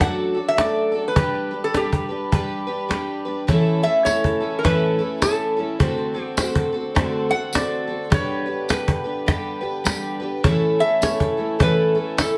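Peaceful and nostalgic, this short excerpt from a longer acoustic folk piece moves at 104 BPM in 4/4 with a gentle swing on the eighth notes, set in A mixolydian. A metal-body resonator guitar played with a steel bar and fingerpicks carries a slide second line throughout, its tone bright, metallic and nasal, sitting up front. Beneath it, a picked twelve-string acoustic guitar provides full-bodied, shimmering, octave-doubled accompaniment from a jumbo body with fresh strings, finger squeak audible in the close, forward sound. A pedal harmonium holds reedy, breathing, vintage chords in the background, while an up-front cajon adds woody hand hits with faint snares and a small-room character. A jingly, compressed, saturated tambourine joins at 4.1 seconds, and a wet studio reverb wraps the ensemble as the chords move from D/F# through G and A to D7.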